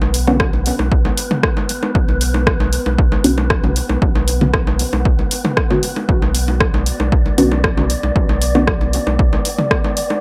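A dry, gritty hardware sound with transformer saturation and a touch of reverb frames this hazy, hypnotic dub techno fragment at 116 BPM in B minor, resting on a Bmadd9 chord. An up-front, punchy electronic kick and an analog drum machine with hi-hat and rim click carry the straight 4/4, while a round, sine-like sub bass with tube saturation and layered, tape-toned electronic bongos and toms with dub echo pump against the beat. A muted, detuned dub chord stab under a constant filter sweep, phaser and echo drifts over an airy, breathy wind-like noise texture that sits dark and low in the mix.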